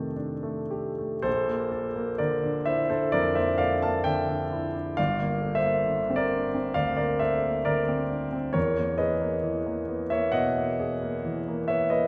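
An intimate, polished concert grand piano, up front with deep bass, long sustain and audible action noise, carries this hazy, serene impressionist classical solo in Bb lydian at a rubato 52-69 BPM in 4/4, moving from F13 through Bbmaj7 and Gmadd9 to Emaj7#11 within a wet recital-hall reverb in a short passage cut from a longer piece.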